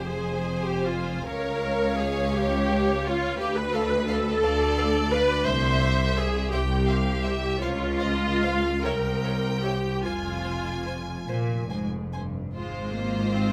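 Swaying in a rubato 6/8 at a slow 46-59 BPM, this elegiac, solemn F minor movement for string orchestra, cut from a longer piece, sets two intense violin sections carrying the melody and a second line above a lush, up-front viola accompaniment, a focused cello bass and a soft-attacked, distant double bass, all bowed with vibrato in moderate reverb, as the harmony moves from Fm through C7b9 back to Fm before touching Ab at 12.6 seconds.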